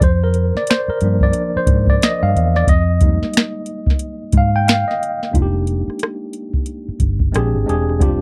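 A soft analog rhythm box swings lightly at 90 BPM with a deep kick, tonal snare, metallic hi-hats, rim clicks and finger snaps beneath a dark, round, foam-muted fingered electric bass, while a worn, slightly out-of-tune tine electric piano with gentle overdrive takes a solo through the first 5.3 seconds of this smooth, introspective neo-soul and R&B excerpt in F dorian, all captured as a dry, close 1970s-style studio recording.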